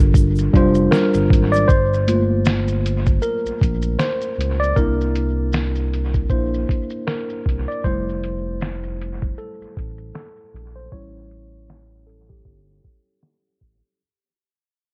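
A hazy, reflective lo-fi hip hop excerpt opens with a worn, slightly out-of-tune tine electric piano and a dark, smooth synth bass, both up front, over a muffled, compressed sampler-style drum kit with a thumpy kick, fat snare, finger snaps, hi-hat and shaker, all swung at 78 BPM in G dorian, while a grainy egg shaker sits in the background from 0.2 to 1.7 s. At 1.7 s the electric piano takes a solo through a filter sweep as the track fades out, moving over Gm7, C7, Fmaj7 and A7. The mix has an echo-heavy, cassette-tape haze with light reverb and a low-pass filter.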